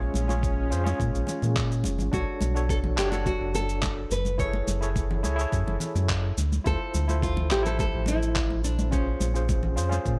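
A round, dark analog bass sits up front in this wistful, smooth sunset chillout excerpt at 106 BPM in 4/4, carrying the low end through a drifting run of minor seventh and ninth chords from A#m7 through Bm9, F#m9 and Dm9. Above it, a fingerpicked nylon-string guitar with fresh strings and a full-bodied classical tone carries the melody through tape echo, while a barky, overdriven tine electric piano played through a combo amp supplies accompaniment with fast tremolo and its own tape echo. A lush, detuned unison pad with chorus glows in the background only until 2.1 seconds. An overdriven electronic shaker and handclaps with a sampler-style, compressed character, re-recorded in a small room, arrive at 0.2 seconds, and the thumpy, gritty kick drum joins them at 0.4 seconds. Soft-handed, damped congas with a thick skin sit further back, and the whole mix stays dry and close, with little reverb.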